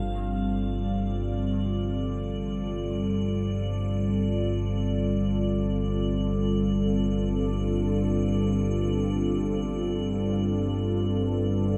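A warbling analog drone and a full-bodied, resonant pad lead this cavernous, ominous dark ambient passage in free time, cut from a longer piece and held on a single Gsus2 chord throughout its 11.8 seconds. The drone sits low and up front, a mellow, vintage sawtooth and pulse-wave tone with chorus and a slow attack that keeps evolving as it sustains. The sweeping pad carries sustained chords in the middle register, its sawtooth and sine layers given a sub octave, chorus and a shimmer reverb. Higher up, an icy, crystalline glass pad adds an airy, bright texture with a noise layer, built-in reverb and shimmer. Barely audible beneath it all, an eerie, inharmonic FM bell plays detuned arpeggios with fast, decaying notes and tremolo. The dreamy mix is soaked in a moderate plate reverb, giving the whole passage a deep, shadowy sense of space.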